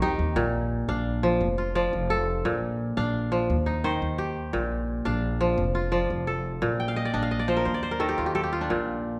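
Warm and joyful, this West African traditional excerpt in a straight 12/8 at 115 BPM sets a ringing, crisp fingerpicked kora up front playing arpeggios over the Bb, F and Eb chords, joined at 0.2 seconds by a woody, thumpy pizzicato upright bass, with a kora fill at 6.8 seconds, all in a wet recital hall reverb.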